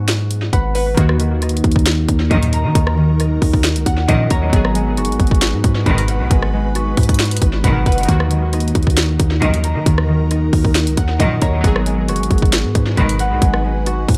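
A dry, echo-heavy mix carries this melancholic, eerie trap excerpt at 135 BPM in a half-time feel in Eb minor, where an up-front trap drum kit with hard-clipped kick, sharp snare and metallic hats, along with a punchy, heavy 808-style bass, drives beneath ringing, thumb-plucked concert harp arpeggios and detuned, glassy digital keys set in the background, joined at 2.0 seconds by a mellow, ethereal pad and at 2.3 seconds by lush, bowed symphonic string stabs with vibrato.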